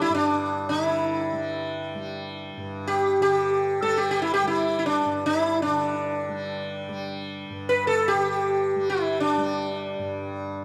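A plectrum-plucked sitar sits up front, its round, buzzing tone ringing with sympathetic strings as it carries the melody between D4 and B4. This is a meditative, devotional passage of Hindustani classical music, unfolding in free time across its 10.6 seconds, cut from a longer performance. Beneath it, a softly plucked tanpura holds a bright, shimmering drone from G2 to G3, set lower in the mix. Both instruments play throughout, tuned to A4 = 439 Hz. A moderate scoring-stage reverb adds a sense of space, giving the sitar's warm voice room to bloom over the hum of the drone.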